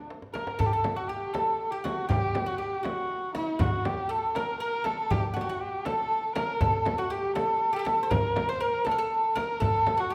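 A nasal, boxy bowed kamancheh leads up front with vibrato and portamento, carrying an expressive melody through this stately Persian modal ensemble piece at 80 BPM in a straight 6/8, tuned to A4 = 443 Hz. A bright, woody fretless oud with double strings plays a plectrum-plucked second line from 0.3 seconds, while a deep tombak sits in the background beside a large, deep frame drum, both struck with hard hands after a short drum fill opens the passage. A wet recital hall reverb surrounds the ensemble in this excerpt cut from a longer piece.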